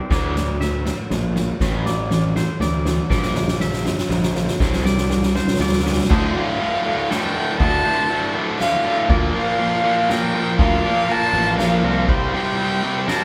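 A twangy, scooped electric guitar picks clean arpeggios in the background as this brooding, cinematic post-rock passage in 3/4 opens, joined at once by an overdriven stack guitar riff, a punchy fuzz bass and an up-front drum kit played with soft mallets, its dark cymbals, fat snare and boomy kick carrying a drum fill through the opening build-up. At 6.1 seconds a tight, bright distorted guitar adds a second riff in the background, and at 6.4 seconds a single bowed violin enters with a woody melody, soft in attack and touched with light vibrato. The band plays live together in a stone room with a wet reverb, and the passage is cut from a longer piece.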